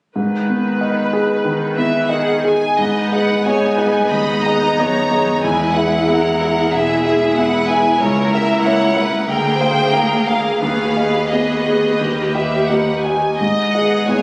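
Brooding and tragic, this classical excerpt in G# minor moves with a rubato feel at roughly 84-96 BPM in 4/4, cut from a longer piece. A clear, intimate grand piano carries the melody up front from the opening, its natural tone marked by audible action noise, while a rich chamber viola section supplies bowed accompaniment with vibrato, focused and smooth at the top. At 1.8 s a clear chamber violin section joins on the melody, intense and up front with vibrato, and at 2.8 s a distant, even violin section adds a smooth second line as a lush symphonic cello section settles into the background on the bass. The harmony travels from G#m through E, a diminished chord over C#, A#7/D and a G#m over D#, then reaches D# before returning to G#m at 13.4 s. The ensemble sits in a moderate concert hall reverb with compression, captured on a phone in the room.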